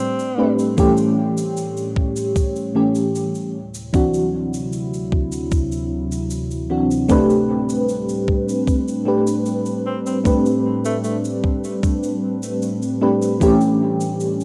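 A slow, straight 4/4 pulse at 76 BPM comes from a thumpy, sampler-gritty electronic kick up front, which enters at 0.8 s, with a bright, grainy cabasa beneath it in this hazy, nostalgic vaporwave piece in A dorian, cut from a longer track. A round, soft FM electric piano carries the accompaniment through tremolo, chorus and tape echo, over a detuned, warbling pad that holds sustained chords with its own reverb, moving from Am11 through A7 and D9. A smooth-topped alto saxophone with vibrato and tape echo appears in brief, forceful jazz-style phrases, the second at 9.9 s, all within the rough, lightly reverberant sound of a small-room home demo.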